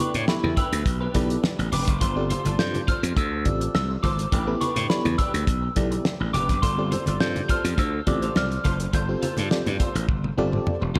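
Feel-good and smooth, this short excerpt from an early-eighties boogie funk piece rides a straight 4/4 groove through a dreamy mix soaked in lush hall reverb. A dry, fat-snared 70s drum kit with a tight kick sits up front beside a growly, punchy slap bass that enters at 0.1 seconds. A clean, twangy electric guitar with tube saturation and ensemble chorus plays a compressed, picked riff, while an FM electric piano with tremolo supplies mellow, decaying chords that alternate between A9sus4 and G9sus4. High above, a soft synth bell carries the melody with a pure, gentle tone colored by chorus and phaser, and very quiet, low-tuned congas ring softly beneath. The bell stops at 10.1 seconds as a drum fill carries the groove to the close at 11.0 seconds.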